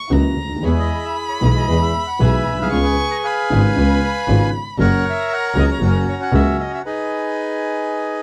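A dry, close recording with a 1970s studio character and little reverb opens this short, playful and nostalgic tango fragment, cut from a longer piece, in 4/4 with a rubato feel. A reedy, airy bandoneon carries the melody up front from 0.6 seconds, while a bowed solo violin adds a high second line with soft attacks, vibrato and expressive portamento. A dark, woody upright piano supplies the accompaniment, and a clear, focused double bass, bowed by one player with vibrato and a smooth top, anchors the low end up front. A lush, distant studio string section adds very quiet stabs with its own vibrato and portamento. The ensemble stops together at 6.9 seconds, and the bandoneon sounds alone until the close at 8.2 seconds.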